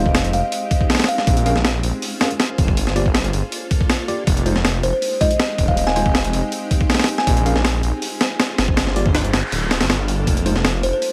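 A layer of vinyl crackle sits over this raw, atmospheric drum and bass excerpt, a jungle cut in F minor running at 160 BPM in straight 4/4. A compressed, gritty sampler-style breakbeat kit sits up front, with a thumpy kick, a high-tuned snare and hi-hat inside a small room ambience. Beside it, a thick, menacing detuned saw bass holds low sustained notes whose beating detune gives it a heavy, looming weight. In the background, a worn and slightly out-of-tune tine electric piano plays stabs through vintage 12-bit sampler grit and dub echo, tracing a cycle of Fm7, Bbm7 and Gm7. A woody, ringing kalimba with a thumbnail pluck surfaces in brief melodic phrases, its hollow-box tone carried off by dub echo. Near the close, at 9.1 seconds, a faint electronic noise sweep emerges from the background and lasts until 10.3 seconds.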